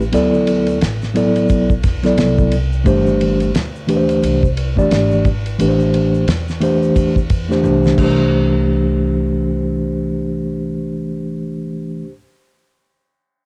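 Relaxed and cozy, this fragment of a longer jazz-hop track rests on a loose, swung hip hop groove. A mellow tine electric piano sits up front with the chords, its clean tone heard through built-in speakers and softened by cassette tape coloring. Beneath it, a woody, thumpy pizzicato upright bass on steel strings gains a touch of tube saturation. A cloth-damped drum kit gives a dry, dark pulse with a fat snare, a tight kick and dark cymbals. Very quiet, band-limited shaker and congas with soft hands add a vintage shimmer. After a drum fill at 7.6 seconds, the kit drops out at 8.2 seconds and the hand percussion at 8.6 seconds, leaving piano and bass alone in a light reverb with the homespun warmth of a cassette recording.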